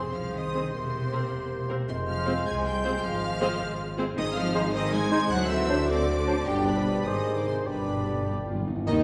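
Quick classical-period symphonic music in F minor, stormy and dramatic, moving in a rubato 6/8 at 104 BPM, with a rich violin section singing the melody high above a second violin line while a mellow, hollow flute, a warm oboe and a dark clarinet trace second lines in the background. A tight French horn section holds sustained chords as a shadowy trumpet adds stabs, and a distant bassoon and smooth-topped violas fill the accompaniment over bowed cellos and double basses carrying the bass. Hard-mallet timpani enter at 7.7 s with an articulate fill, and the whole orchestra sits back in a wet scoring-stage reverb.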